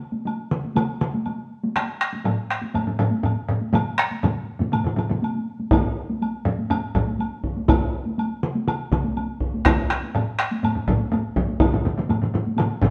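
A stone room gives this recording a wet, echoing reverb, with the players performing live together in one space. It is a ceremonial, driving piece of Japanese traditional taiko drumming in a straight 4/4, cut from a longer performance. One taiko ensemble, struck with heavy sticks, opens at 0.1 seconds with a roomy acoustic sound. A woody woodblock from a small room and a band-limited, vintage-sounding solo taiko played with hard sticks sit close behind. A second ensemble enters at 1.8 seconds, also on hard sticks, with an aged, narrow-band tone placed up front and louder than the first. At 5.7 seconds a further solo taiko joins, the loudest of the drums, carrying a distant, large-room resonance while still sitting forward in the mix, and the layered drums press on together to the end.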